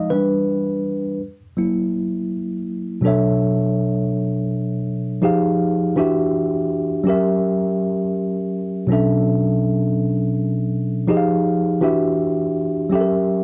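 A worn, cassette-tinged sound with a low-pass filter and moderate studio reverb frames this reflective, melancholic hip hop fragment in B minor at 82 BPM with swung 16ths, where a slightly out-of-tune, up-front tine electric piano plays alone throughout, under a filter sweep for the first 3.0 seconds before settling into a cycle of chords such as Bm11, Fm9, Em9 and F#7b9.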